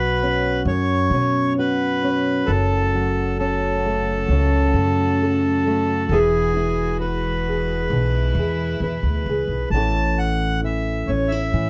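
Close, detailed microphones and a light reverb give this short passage, cut from a longer piece, an intimate and clear sound. It is pastoral, peaceful acoustic folk for a small band in a steady, unhurried 4/4. A fingerpicked steel-string acoustic guitar with a dark, woody tone from old strings carries the accompaniment, while a pizzicato upright bass adds a growly, thumpy low end. A reedy, up-front accordion plays the second line over the harmony, moving from Bsus2 through F#m and Eadd9. A chamber string section enters at 2.5 seconds with soft-attack, sul tasto bowed chords and light vibrato, sitting warmly in the background until 9.7 seconds. At that point the music settles on A and the accordion takes a brief solo through to the end.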